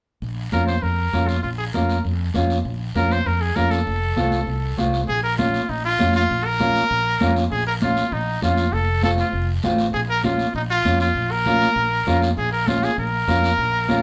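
A driving, passionate cumbia in Bb minor at 198 BPM opens at 0.2 s on a round, punchy fretless bass up front, with high-tuned congas struck with hard hands sitting very low in the mix and a raspy, dry guiro. At 0.5 s a bright, present trumpet takes the solo melody with vibrato in a pop style, backed by a dark, clean, fingered electric guitar, as the harmony moves between Bb minor and F. The band sounds as if playing live together in one room, with a wet studio reverb, in this cut from a longer piece.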